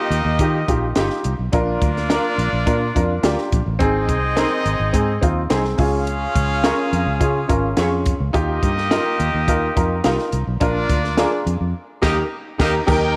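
A woody, slightly detuned upright piano accompanies this uplifting, joyful slice of uptempo 1960s-style soul at 106 BPM, joined by a horn section with light vibrato, a round foam-muted fingered electric bass, a compact cocktail kit with dark cymbals and a high-tuned snare, and a twangy, slightly broken-up guitar with chorus sitting in the background, all washed in echo chamber reverb, before a band accent at 11.7 seconds and a lush violin section with portamento enters at 12.9 seconds.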